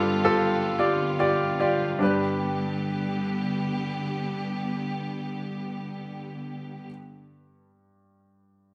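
Anthemic and uplifting, this short pop fragment in G major moves at 111 BPM in a straight 4/4, cut from a longer piece. A clear, polished baby grand piano carries the accompaniment up front, its tone given a subtle chorus, and it plays through to 8.7 seconds. Alongside it, a lush studio string section holds sustained bowed chords with vibrato and a smooth top, stopping at 6.9 seconds. The harmony opens on G7 and settles onto G at 2.0 seconds, where a new section begins. Moderate plate reverb and a small room ambience frame the bright, 1980s-style digital production.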